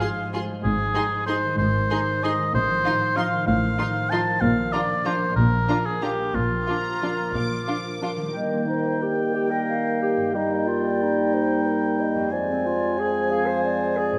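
This classical orchestral ballroom waltz in Eb major moves in a rubato 3/4 at 171-204 BPM, with an elegant, festive mood, and it is cut from a longer piece. A clear violin section carries the melody high in its range, while an up-front oboe sings a second line throughout, joined by a lush symphonic violin section and a viola section sitting in the background, the string sections all bowed with vibrato. A ringing, fingerpicked concert harp supplies arpeggios across the whole passage, and from 0.6 s rich, smooth cello and double bass sections anchor the bass. At 8.3 s the bowed strings drop away and the woodwinds and brass take over: a pure, hollow, close-miked flute adds a second line, joined at 8.5 s by a roomy clarinet, while a mellow bassoon accompanies and a dark French horn section holds soft-attack sustained chords. A wet concert hall reverb with a 2.4-second decay wraps the ensemble in spacious ambience.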